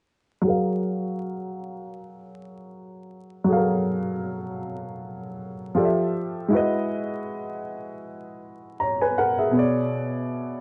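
A woody upright piano sits up front in this cosy, dreamy hip hop fragment, cut from a longer piece, playing accompaniment from 0.4 to 10.6 seconds across a range of B2 to A#5. The tempo is a relaxed 79 BPM in 4/4, with a 56% swing on the sixteenths giving the groove a gentle lilt. In F# major and tuned to A4 = 442 Hz, the harmony drifts from F#maj7 through Fmaj9 and Emaj9/G# before settling on Bm6 at 9.6 seconds. The piano carries a cassette tape character and a low-pass filter, with a filter sweep running across its whole part. A damp studio ambience with a short half-second decay surrounds it, and the dark, warm production adds vinyl crackle while keeping the top end muted.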